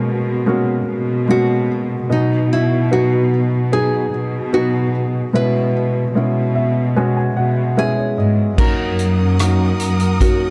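Pop ballad at 74 BPM, heartfelt and hopeful, where a fingerpicked nylon-string guitar carries the melody with delay over a present baby grand piano, which adds a fill from 6.2 seconds, and an intimate, bowed cello section holding the bass, until at 8.6 seconds a distant, lush string section and a natural country drum kit with a punchy kick join in, all set in a dark, small-room production with light reverb.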